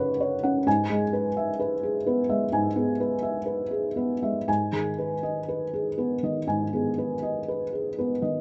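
Neoclassical minimalist piano in 4/4 with a loose, rubato feel, this brief reflective and wistful fragment of a longer piece features a solo felt-muted upright piano played throughout its 8.4 seconds. The thick felt makes the tone soft, dark, boxy and intimate. It sits close and up front with audible action noise, moving from F#sus4 through E/G# to G#m at 4.5 seconds. A light studio reverb and a rough home-demo mix give the sound a dull top end.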